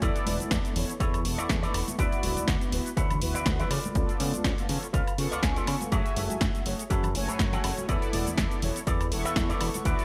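Bright 1980s-style digital production with light reverb frames this groovy, cosmic nu-disco piece at 122 BPM with a lightly swung 16th feel, where a punchy, tape-warm electronic kick and a house kit of punchy snare, warm hi-hat, cabasa and woodblock sit in a small, gated room, a fat, detuned sawtooth analog bass drives the low end through tube saturation, a round, dark synth brass pumps with chorus and delay, a twangy, clean envelope-filtered electric guitar riff shimmers with lush chorus, thin high-tuned congas struck with hard hands sit in the background, and a clean guitar fill appears from 5.2 to 5.9 seconds over chords moving from E7sus4 through D69, C#7b9b13 and F#m9.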